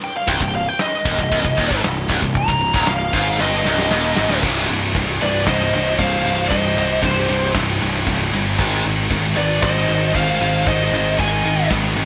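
A small room ambience frames this relentless heavy metal excerpt at 116 BPM in C minor, where a dark, high-gain lead guitar with tape echo solos over a big rock drum kit with a tight kick and a rolled-off top until a drum fill at 3.4 seconds drops the band into half time at 4.4 seconds, a smooth, overdriven second lead joins from 5.2 seconds, and an up-front, bright high-gain riff guitar, a tight distorted guitar in the background and a growly fuzz bass drive the riff as the chords move from Cm to Ab.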